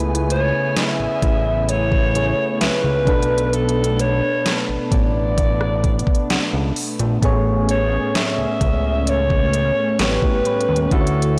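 A slow, straight 4/4 groove at 65 BPM anchors this romantic, tender contemporary R&B excerpt in A major. An electronic drum kit with a knocking kick, deep snare and smooth hi-hats sits up front, with rim clicks, alongside a fat, saturated analog bass whose detuned sawtooth tone has a plucky filtered attack. Soft, round electric-piano-like synth keys with chorus and tremolo carry the accompaniment, while a hollow, flute-like pad warbles quietly in the background, its ensemble chorus adding a vintage shimmer. From 0.3 seconds a growling alto saxophone takes the solo melody in a jazz style, raspy and gritty with vibrato yet set back in a roomy, distant space. A very quiet, woody mallet-like synth pluck with phaser adds percussive texture from 1.2 seconds, as the chords move from Amaj7 to Bm9 and back, ending on A9, all under light reverb and a blown-out, overdriven recording sound.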